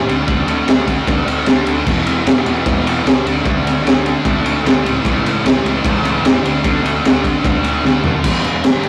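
A rough rehearsal-room recording with warm saturation and light reverb opens this raw, swaggering garage rock excerpt at 151 BPM in a straight 4/4. A thick, bright, double-tracked fuzz guitar drives the riff through D5, E5 and A/C# chords. A growly, overdriven picked electric bass rides underneath, while an up-front, gritty breakbeat kit with dark cymbals, a high-tuned snare and a tight kick pushes things along and fires off a drum fill at 7.8 seconds before landing on Em at 8.2 seconds.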